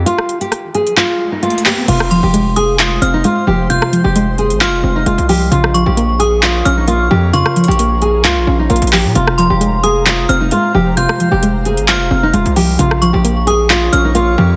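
A woody, fingerpicked nylon-string guitar sits up front in this dark, eerie trap excerpt, carrying the melody in F minor through a low-pass filter and tape echo. It rides over a heavy, saturated 808-style bass and a booming, overdriven analog drum machine whose dry handclaps, rim clicks, metallic hi-hats and crash cymbal carry a gritty 12-bit sampler edge at 132 BPM in a half-time feel. The piece opens on a short break where a background riser builds, and at 1.9 s the harmony settles into a slow alternation between Fm and Bbm. That is also where a soft, round pluck enters with chorused accompaniment. An inharmonic FM bell rings bright above it with chorus, tremolo and tape echo, while an ethereal, detuned pad sustains mellow chords deep in the background. Light digital reverb and vinyl crackle surround a dense, heavily limited modern master.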